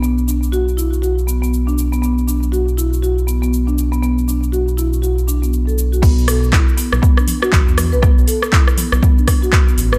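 A dry mix with very little reverb opens this spiritual, driving slice of afro house, cut from a longer piece and moving at 120 BPM in 4/4 with a swung sixteenth-note feel in B minor. A mellow, woody marimba played with soft mallets spins arpeggios between B3 and B4 over a Bm chord, its round tone carrying a boxy small-room character, a dub echo and a sidechain pump. Beneath it, a dark, detuned sawtooth bass in unison rumbles deep and up front, its beating, sustained notes with a fast attack also pumping against the sidechain. An electronic afro-pop drum kit runs throughout with metallic hi-hats, shaker, handclaps, rim clicks, toms and crash cymbal. At 6.0 seconds the harmony drops out for the drop, and a punchy, layered, overdriven electronic kick pushes to the front until 9.6 seconds.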